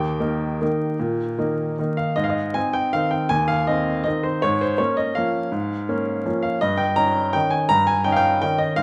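A lilting 3/4 waltz pulse, played with flexible rubato at roughly 147-174 BPM, carries this elegant and graceful classical piano piece in Ab major, tuned to A4 = 437 Hz. A baby grand piano plays solo from start to finish, ranging from Eb2 up to Bb5 with a clear, intimate tone that sits up front in the mix. Its natural sound includes audible action noise, giving the sense of being seated close to the instrument. The harmony opens on Eb and moves to Ab at 2.2 seconds, where a second section begins, then passes through Bbm7/Ab and settles on Eb7/G near the close. A moderate recital hall reverb surrounds the playing, and a layer of vinyl crackle lends the short excerpt, cut from a longer piece, an aged, nostalgic patina.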